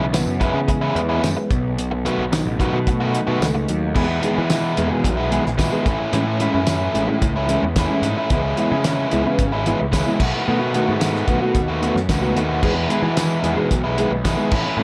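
A small room and light reverb frame this short, wistful indie rock excerpt, with a jangly lift over a straight, steady pulse in 4/4. Up front, a biting overdriven guitar plays a picked riff with a touch of spring reverb, while a mellow, dark electric guitar plays its own clean, fingered riff through ensemble chorus and analog delay. Underneath, a fuzz picked electric bass growls with a bright, overdriven edge. The cloth-damped, thuddy drum kit sits close, with a fat snare, tight kick, dark cymbals, hi-hat and tambourine, its top rolled off. The harmony opens on C#m7 and B7, then at 4.0 seconds moves through Emaj7 and Amaj7 before circling back, arriving on Emaj7 at 12.6 seconds.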